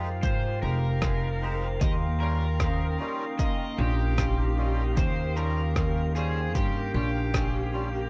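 Ambient dub at 76 BPM with a meditative, spacious mood, built on Fm7 moving to Eb7, where an up-front woody pizzicato upright bass and a punchy overdriven electronic kick play alongside muffled, pitched-down cabasa and rim click, while an overdriven slide guitar carries the melody from 0.2 seconds over reedy melodica stabs and vibraphone arpeggios with slow motor vibrato, both thrown into dub echo, as a warbling detuned pad and a glassy, drifting harmonics texture sit in the background of a small room.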